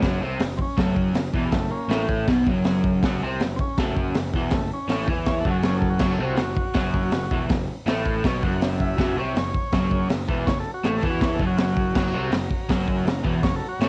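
Rowdy and swaggering, this garage rock cut from a longer piece finds a buzzy, lightly vibrato-laden combo organ taking a solo from 0.6 seconds over a crunchy, double-tracked electric guitar riff, a growly fuzz bass sitting in the background and a punchy, dark-cymbaled acoustic drum kit with a high-tuned snare, all captured dry as a home cassette recording, before a reedy, heavily vibrato-soaked second organ slips in with very quiet sustained chords at 11.9 seconds.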